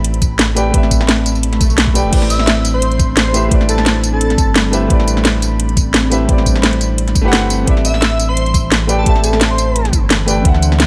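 A lightly swung 173 BPM drum and bass groove in 4/4 drives this dreamy, melancholic slice of liquid drum and bass, its garage drum kit sitting up front with a cracking snare, metallic hats, tambourine and crash, all carrying a tape-warm, layered sheen. An electronic kick adds a knocking punch just after the start, while a deep, full sub bass with an octave layer holds down the low end with a sine-and-triangle roundness. A dark, mellow concert grand piano plays accompaniment with a boxy, short-sustained tone touched by digital delay, and a glassy, ethereal FM pad hangs in the background with slow-attack chords, ensemble chorus and its own reverb. The harmony moves from Cmaj7 to Am11 at 2.1 seconds, just after a very quiet electronic swell, and settles on Cmaj7/A at 7.7 seconds. An airy, softly detuned lead carries the melody in two phrases, the first beginning at 2.3 seconds and the second at 7.8 seconds, its sine tone shaded by a noise layer, a moving notch, chorus and tape echo, all set in a light digital ambience.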